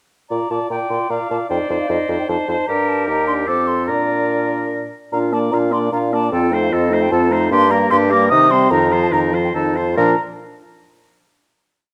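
Cheerful and graceful, this brief classical-period movement for wind quintet moves briskly in three, a complete piece that states its opening section twice before settling on a final chord at 10.0 seconds. A mellow, hollow silver concert flute carries the tune with vibrato and tongued notes, sitting high above the ensemble. The oboe, heard as distant and roomy with light vibrato, supplies a second line of repeated notes, chords in the rhythm of the tune, a rocking two-note figure and sustained chords, while the French horn fills out the middle with similar repeated notes, rocking figures and held chords. The clarinet enters at 0.7 seconds with a clear counter-melody alongside its own rocking figure and sustained chords, and the bassoon, placed up front with a light vibrato, anchors everything beneath with repeated bass notes on the beats and sustained bass. The second pass slows down from 6.9 seconds, easing through a suspended chord into the closing cadence, all set in a moderate recital hall reverb.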